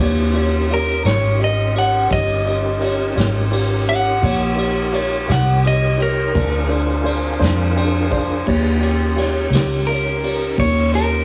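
A slow 12/8 blues rolls along at 57 BPM in Eb mixolydian, its soulful, rollicking mood carried by a brushed vintage drum kit with a tight kick and a pumping small-room sound, under a round, foam-muted electric bass that sits up front. A clean, dark electric guitar takes the melody as a solo from 0.7 seconds, moving from Eb7 to Bb7 over a mellow, worn grand piano with audible action noise and a tonewheel organ holding chords in the background through a slow rotary speaker and chorus vibrato. The piano steps out with a fill at 7.4 seconds before the harmony returns to Eb7, all heard through light reverb and a heavily compressed radio-like sound in this short cut from a longer piece.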